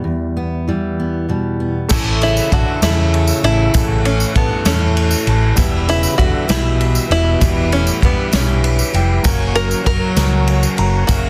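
In a lilting 6/8 at 65 dotted-quarter beats per minute, this nostalgic indie folk piece, cut from a longer work, opens with a full-bodied jumbo steel-string acoustic guitar fingerpicked up front over an E minor chord. At 1.9 seconds the arrangement builds: a hollow-body short-scale bass, round and amped, anchors the low end; an unplugged drum kit played with bundle sticks brings a punchy kick, medium-tuned snare and dark cymbals in a roomy, distant space; and a jingly, saturated tambourine sits beside it. Behind them, an old ladder-braced guitar with worn strings picks a boxy, woody accompaniment, a very quiet, polished grand piano adds support, an upright piano with audible action noise and long sustain traces arpeggios, and a flute-like tonewheel organ holds soft sustained chords through a slow rotary speaker with key click. From 2.2 seconds a twangy, plunky open-back banjo carries the melody with slapback echo, while a close-miked trombone in classical style plays a mellow second line in the background. 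The chords move from A to E minor to F#, all in a small room ambience with a dense, heavily limited modern master.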